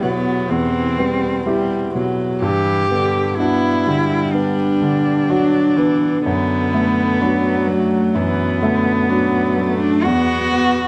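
This neoclassical piano-and-strings piece unfolds at 63 BPM in 4/4 with a rubato feel, fragile and reflective in mood. The 10.9-second excerpt is cut from a longer work and tuned to A4 = 442 Hz. A single bowed cello carries the second line, sitting up front with light vibrato, soft attacks and a sul tasto tone. A baby grand piano provides accompaniment, boxy and forward in the balance, reaching down to E2. One viola adds quiet accompaniment in a narrow middle register, played sul tasto with an airy bow and gentle vibrato. The harmony moves from Em through Gmaj7 at 2.4 seconds and D6/F# to an open E5, all heard through close, detailed microphones and a light reverb, with the strings sounding intimate and warm.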